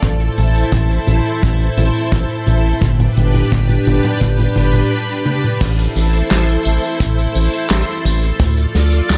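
A lightly reverberant studio sound frames this moody, nostalgic synthwave excerpt in A minor at 86 BPM, cut from a longer piece. A lush, vintage string machine sustains bright, slow-attack chords up front with ensemble chorus and sidechain pumping, over a round, deep analog bass with tube saturation moving from Am to G. An acoustic kit played with bundle sticks, including a small-room tight kick in the background, a medium-tuned snare, hi-hat, toms, crash, handclaps and tambourine, fills through the first 4.9 seconds before a short break and a final fill leading into a section that closes on Dm at 8.4 seconds.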